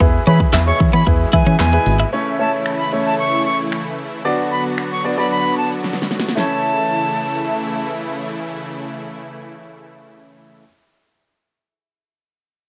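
Heard as a home cassette recording with a touch of small-room reverb, this summery, carefree dance-pop fragment opens on a drop where a round, foam-muted fingered bass and a clean, chorused twelve-string electric guitar riff play only briefly, crisp group handclaps sit in the background, and an up-front electronic drum kit with a punchy kick, fat snare, hi-hat, finger snaps and handclaps drives on until a fill at 5.8 s, while a clear, polished baby grand piano and huge, detuned supersaw chords pump under sidechain throughout and an airy, reedy silver flute with vibrato carries the melody from 0.3 s.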